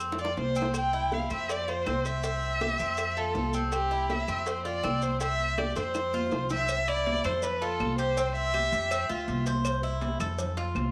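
Set in a moderate echo-chamber reverb with studio ambience, this sunny, relaxed Cuban son and guajira excerpt moves at 162 BPM in C major, alternating between C and F chords. A rich, expressive bowed violin sits up front with vibrato and portamento from 0.2 to 9.4 seconds, over a metallic, picked Cuban tres playing arpeggios on double strings and a dark, thumpy pizzicato upright bass. Behind them, ringing high-tuned congas, tight, compressed bongos and cowbell struck with hard hands, grainy maracas and very quiet, close, woody claves fill out the percussion, with drum fills at the start and around 5.6 seconds.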